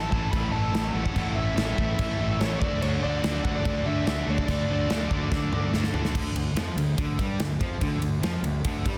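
A straight 4/4 hard rock groove at 144 BPM drives this energetic, swaggering excerpt, where a punchy, up-front drum kit with bright cymbals and a drum fill from 5.3 to 6.2 seconds anchors a growly fuzz bass, three background rhythm guitars (one sludgy and dark, one bright and overdriven, one double-tracked and high-gain) churning out riffs over A and D, a smooth overdriven lead guitar melody that stops at 5.7 seconds, and a very quiet tonewheel organ with key click and slow rotary swirl holding chords until the music shifts to a Dmadd11 at 6.2 seconds, all in a dense, heavily limited modern mix.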